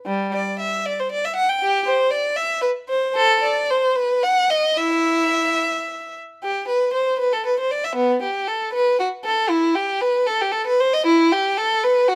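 This is a classical, baroque-style suite movement for unaccompanied violin, cut from a longer piece, with a radiant, serene mood. It moves in 6/8 at roughly 70-82 BPM counted in dotted quarters, and the rubato lets the pulse breathe freely. A single warm bowed violin plays alone from 0.1 s to 12.2 s, ranging from G3 to G5, opening in G major before turning to E minor at 3.2 s. The playing is expressive, with soft attacks, singing vibrato and gliding portamento between notes. The violin sits up front in a light reverb, so the performance feels close and intimate.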